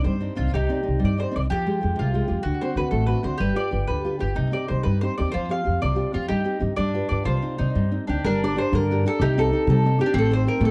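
A round, up-front mandolin sings the melody over a bright, fingerpicked classical nylon-string guitar, joined almost at once by a woody pizzicato upright bass, in a passionate, wistful Italian folk serenade in a rubato 6/8. At 0.6 seconds a second picked mandolin adds a lower line, its double strings touched by slapback echo. The dry, close 1970s-style studio sound keeps this short cut from a longer piece intimate as the minor-key harmony moves into a new section at 8.2 seconds.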